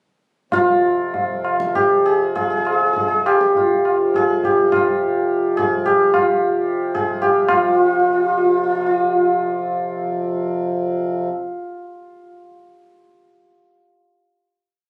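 Longing and introspective, this short, complete Hindustani classical piece moves in a 3/4 metre with a straight feel, its tempo quickening from about 97 to 128 BPM between 0.5 and 10.5 seconds. Up front, a hammered santur carries the melody in a narrow span from F4 to Ab4, its shimmering, ringing tone weaving a composed line with improvisation inside a rhythmic cycle. Beneath it, a pedal harmonium holds a reedy, breathing drone from F2 to C3, close-miked, dry and full though sitting low in the balance. A low-tuned tabla plays a twelve-beat cycle with a ringing, live-room sound, dropping out at 7.7 seconds as the theme gives way to a final chord. Captured on a phone in a reverberant club-like space with compression, the recording has a short, wet ambience around the instruments.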